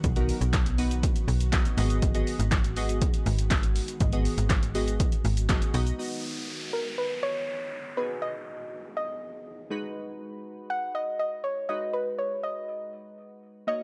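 Dance-pop at 121 BPM in 4/4 with a straight feel, this summery, euphoric excerpt is cut from a longer piece and moves between B and G#m7 chords. It opens with a punchy analog drum machine up front, its kick, snare, handclaps, hi-hat and shaker carrying a short room on the snare, clap and hats, alongside a snappy, slap-like FM bass with a metallic attack and an ethereal, detuned pad sitting mellow in the background with ensemble chorus and built-in reverb. Glassy, bright digital keys with chorus, phaser and a filter sweep play accompaniment throughout, pumping with the sidechain like the bass and pad. At 6.0 seconds the drums, bass and pad drop away as an electronic downlifter comes in, and at 6.7 seconds a soft, round pluck takes the melody up front, its dark tone shaped by a filter sweep and chorus. The overall sound is dry and gritty, with little reverb beyond the pad's own.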